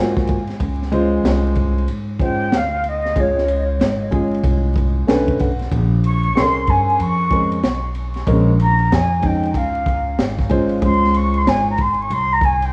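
A breathy concert flute carries the melody from 2.2 seconds, its tongued notes colored by vibrato and a tape echo, with a slightly unsteady, faraway quality. This short cut from a longer jazz-hop piece has a cool, nocturnal mood, set over a swung sixteenth-note hip hop groove in 4/4. A crunchy, saturated breakbeat kit with a high-tuned snare, tight kick and dark cymbals sits up front, while a woody pizzicato upright bass with gut strings adds a thumpy low end. A smooth, vintage-sounding grand piano lays down sustained jazz chords through rich ninths and sevenths, plays a brief fill at 4.8 seconds and drops out at 11.7 seconds. The whole track has the rough feel of a home demo in a small room, with vinyl crackle and a touch of studio reverb.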